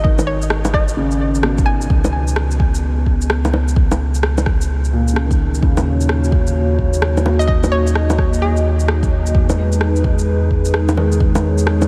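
Soaked in a vast ambient reverb with a long tail and a bed of vinyl crackle, this dreamy, nocturnal future garage excerpt moves at 129 BPM in 4/4 with a swung sixteenth feel in C# dorian. A deep electronic kick and a kit of electronic bongos, shaker and rim click carry the groove, both set in a studio reverb, while a soft, round dub sub bass pumps against the sidechain beneath. A dark, woody upright piano plays low accompaniment through a low-pass filter sweep, analog delay and sidechain pumping, giving the whole a smoky, vintage melancholy. A hollow, nasal square-wave pluck with chorus and tape echo sketches a bouncy melody at the opening and returns at 7.4 seconds. At 5.9 seconds a moody, detuned analog pad joins with slow-attack sustained chords, its chorus and 12-bit sampler grit adding a ring-modulated haze as the harmony drifts from G#m7 through C#sus2 and D#m7 to Emaj7.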